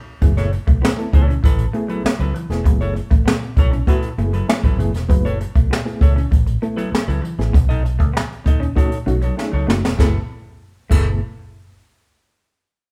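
Up-front brushed drums with a boomy kick, high-tuned snare, dark crash cymbal and hi-hat drive this hypnotic, funky 98 BPM excerpt in F# dorian alongside a round, punchy, foam-muted fingered bass, two clean hollow-body electric guitars (a picked low riff set back in the mix and a fingered higher accompaniment) and reedy, worn, slightly out-of-tune electric piano stabs with fast tremolo, the band playing live in one lightly reverberant room as F#m11 moves to B9 at 7.5 seconds and a drum fill at 9.4 seconds leads back to F#m11.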